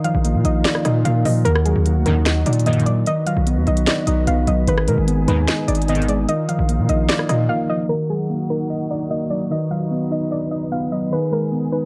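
A distorted 808-style bass dominates this melancholic, hard-hitting trap excerpt, its saturated sine tone carrying a noise layer and a heavy, aggressive bite. The track moves at 149 BPM with a half-time feel in Eb harmonic minor, and the trap drum kit adds a sharp snare, crisp hats, rim clicks and finger snaps before bass and drums drop out for a brief break at 7.5 seconds. A worn, slightly out-of-tune tine electric piano plays the accompaniment, while a soft, round pluck with chorus and tape echo carries the melody alongside an airy large flute ensemble holding sustained chords with vibrato. A bright, resonant sweep polysynth cuts in with juicy, detuned stabs, colored by chorus and tremolo, first at 2.1 seconds. The chords cycle through Bbsus4, Ebm, B and Abm, and a filter sweep runs from 7.9 seconds to the end in a dark, dry production.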